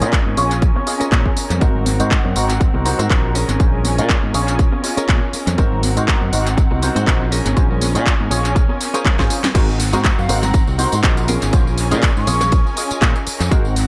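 Groovy and nostalgic, this excerpt of filtered disco house at 121 BPM in Bb minor swings its 16ths over a Bbm7 and Ab9 vamp, with a punchy, up-front electronic kick, a house kit of cracking snare, crisp hats, handclaps, tambourine and crash, background tambourine and congas, a growly, up-front fingered electric bass, a stringy, phased clav, a clean, picked electric guitar riff roughened by 12-bit sampler grit, and lush bowed strings holding chords, most of them pumping under sidechain as a filter sweep builds through a drum fill into a drop at 9.5 s, where a breathy, mellow concert flute adds a brief melody from 10.2 s in an echo-heavy mix with light reverb.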